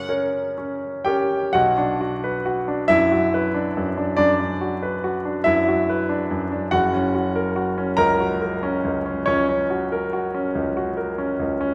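Classical in B minor, this yearning, melancholic fragment from a longer piece moves slowly in 12/8 at 40-48 BPM with a rubato feel, its harmony passing from F# to Bm at 1.5 seconds and back to F# at 6.7 seconds. A bright grand piano carries the accompaniment throughout, spanning F#1 to A#5 with a brilliant, polished tone, short sustain and audible action noise that keep it intimate and up front. A wet concert hall reverb surrounds the playing with a lingering tail.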